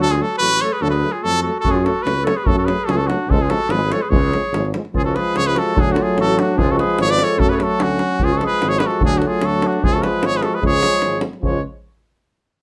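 In a straight two-beat metre that gathers pace throughout, this virtuosic, bittersweet fragment of Balkan brass-band folk puts a warm trumpet melody up front over a distant, roomy clarinet second line, with a smooth-topped euphonium and a lightly vibrato French horn in the background, a mellow tuba set further back on the bass, and a deep, close, dry davul entering at 1.6 s, inside a moderate studio reverb.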